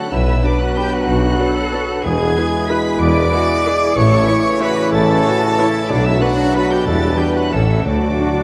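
Up front, a rich, bowed chamber double bass section anchors this sweeping, elegant classical passage in 3/4, joined in the bass by a clear tuba and a lush symphonic cello section, while soft-attack trumpet stabs, dark French horn and present trombone chords, a smooth studio viola section and a warm bassoon fill out the accompaniment. An intense chamber violin section with vibrato carries the melody high above, shadowed by second lines from a pure concert flute, a roomy clarinet, a distant cor anglais and a very quiet, focused second violin section. The rubato feel, vast echoing reverb and vinyl crackle give this cut from a longer piece a grand, aged atmosphere, and round, soft-malleted timpani add a fill at 7.9 seconds.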